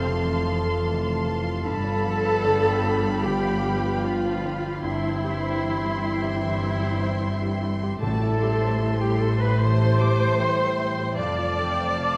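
In a free, rubato 4/4, this sorrowful, moving cinematic fragment sets a lush, veiled con sordino violin section on the melody above a second muted violin line, a pure flute and a distant clarinet, while dark muted violas, a background baby grand piano, a mellow French horn section holding chords, very quiet ringing harp arpeggios, and muted cello and double bass sections fill out the accompaniment and bass in a wet scoring-stage reverb, with soft-mallet timpani sounding only from 8.0 to 9.2 seconds.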